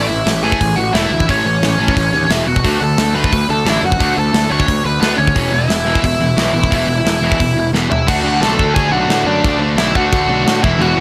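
A smooth, overdriven lead guitar sits up front from the opening, carrying a picked melody over two background rhythm guitars, one bright and one sludgy and dark, and a growly, fuzz-laden picked bass. This is rowdy, rebellious punk rock in a straight four, with a tight metal drum kit entering at 0.3 seconds, its tight kick and medium-tuned snare pushed forward in a big room sound, and a drum fill at 7.7 seconds leading into a new section at 8.1 seconds. The mix stays dry and close, and a thick, double-tracked fuzz guitar slips in at 10.8 seconds just before this cut from a longer piece ends.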